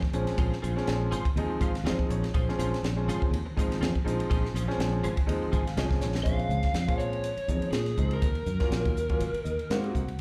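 Slick and funky, this electric jazz fusion cut from a longer piece moves at 122 BPM in Bb minor with a light sixteenth-note swing, heard as a live gig through the venue's PA with club reverb. A crisp, airy drum kit with a high-tuned snare and tight kick sits up front beside a dark, round, foam-muted fingered bass, while a clear, open grand piano accompanies with fills and slapback echo, and a clean, compressed electric guitar with ensemble chorus plays stabs until 6.2 seconds. After a drum fill at 6.0 seconds, a lo-fi, overdriven lead guitar from a small cranked amp takes the melody from 6.2 seconds as the chords move from Bbm9 to Ebm7 and Ab9.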